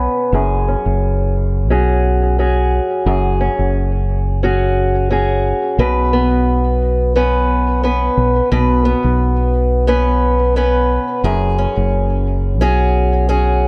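A gently swung sixteenth-note feel in 4/4 drives this playful, hopeful folktronica fragment, cut from a longer piece. An old ladder-braced acoustic guitar, woody and boxy with tired strings, fingerpicks arpeggios up front through a low-pass filter, tape echo and a filter sweep, moving from F#sus2 to Bsus2 and back. A fingered electric bass, dark, round and punchy, sits close alongside in a light, small-room ambience.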